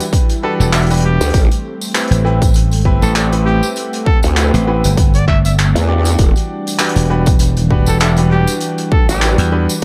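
This playful, gritty glitch hop fragment at 99 BPM opens with a mellow, detuned sawtooth pad in the background, its sustained chords carrying chorus, 12-bit sampler grit and sidechain pumping beside clear, intimate stabs from a baby grand piano, whose action noise and long sustain are roughened by the same grit and pumping and trailed by analog delay. A vintage acoustic kit with a rolled-off top supplies handclaps, hi-hat and rim click in a natural studio room, joined by a close, jingly tambourine and a punchy, tape-toned electronic kick that sits up front from 0.1 s. From 0.4 s a smooth-topped, jazz-style trumpet solo, warm with vibrato and scooped notes, floats through analog delay. A bright, punchy slap bass arrives at 0.6 s, and at 1.2 s an aggressive, unison-voiced growl bass enters, its wobbling formant-filtered sine tone saturated by tube drive and thickened with chorus. The harmony moves from Em7 to Am7 and back to Em7 in A dorian, with a 16th-note swing in 4/4 and an echo-heavy mix lightly touched by reverb and studio ambience.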